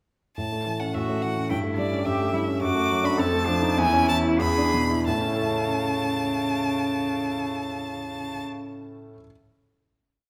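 A bright, focused violin and a polished concert grand open this short, cheerful classical-period piece for piano trio together at 0.4 s, the violin singing the graceful melody up front with vibrato while the piano supplies broken-chord accompaniment with deep bass, long sustain and audible action noise. A soft-attacked cello joins at 0.9 s with an intimate, smooth-topped counter-melody and sustained chords, all in a flexible rubato that gradually slows from 2.1 s. The trio settles onto a final chord at 5.1 s, framed by the wet reverb of a recital hall.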